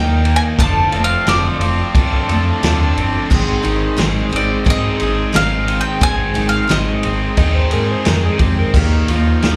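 Folk rock and heartland rock with a dusty, reflective mood, heard live through a club's PA with light reverb in this short excerpt: a bright bowl-back mandolin carries the melody with slapback echo until 7.3 seconds, a dark, slightly broken-up electric slide guitar takes a second line from 7.4 seconds, and underneath a jumbo steel-string acoustic with fresh strings and finger squeak, an overdriven, double-tracked garage guitar riff, a reedy, breathing harmonium in the background, a round, amped fingered bass and a vintage drum kit with punchy kick and rolled-off top entering at 0.3 seconds move through Ebsus2, F6 and Ab chords.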